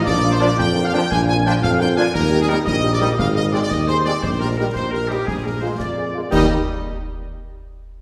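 A punchy, up-front tuba anchors this rousing, proud military-style wind band march in Eb major, moving at 115 BPM in a straight 6/8. A bright, tight trumpet section carries the melody over a smooth woodwind line with light vibrato, soft-attacked vintage-toned French horns in the background, and warm sustained trombone chords. A very quiet, close and dry concert snare, bass drum and dark clash cymbals sit underneath, all bathed in a wet scoring-stage reverb heard from further back in the room. The chords move from Bb through Eb and Ab to Bb7 before settling on Eb at 6.3 seconds in this short cut from a longer piece.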